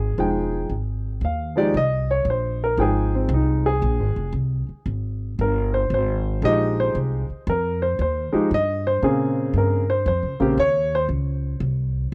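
Dry and close with a 1970s studio character and a small room's reverb, this moody, late-night excerpt of a swinging jazz piano trio in F minor at 115 BPM sets an up-front grand piano with a natural, short-sustained tone on the melody until 11.0 seconds over a woody, thumpy pizzicato upright bass on dark gut strings that continues to 12.1 seconds, as the harmony moves from Fm9 to Bbm9 at 9.0 seconds.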